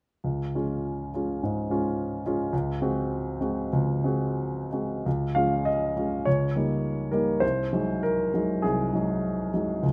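Flexible rubato phrasing stretches and relaxes the 4/4 metre in this romantic classical character piece for solo piano, a short passage cut from a longer work. The mood is passionate and lyrical, with the grand piano playing alone from 0.2 s to 9.9 s across a range from C2 to F5. Its tone is warm and natural, placed up front by close, detailed microphones, while a moderate scoring-stage reverb with a 1.6-second decay gives the sound a sense of space. The harmony opens on a D-flat chord and moves to an A-flat seventh over a D-flat bass before a new phrase begins at 5.1 s. That second phrase returns briefly to the home chord and then shifts through further seventh chords, ending on an unresolved dominant as the passage breaks off.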